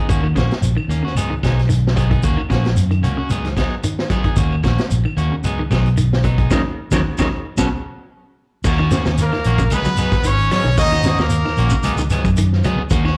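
A driving afrobeat groove at 112 BPM, with a light sixteenth-note swing, rolls over a vamp alternating Ebm7 and Db9sus4 in Eb minor, anchored by a round, punchy fingered bass and an up-front vintage drum kit with dark cymbals and a high-tuned snare. Clean picked electric guitar arpeggios, soaked in spring and plate reverb with slapback echo, sit beside slightly broken-up guitar stabs, while a grainy shekere and distant woody claves fill out the percussion, and the band hits an accent from 6.5 to 8.7 seconds. At 9.2 seconds a brilliant, forceful trumpet takes the melody over a raspy, gritty tenor saxophone line touched with tape echo, giving this intense live excerpt, heard through a club PA, a fierce horn lift.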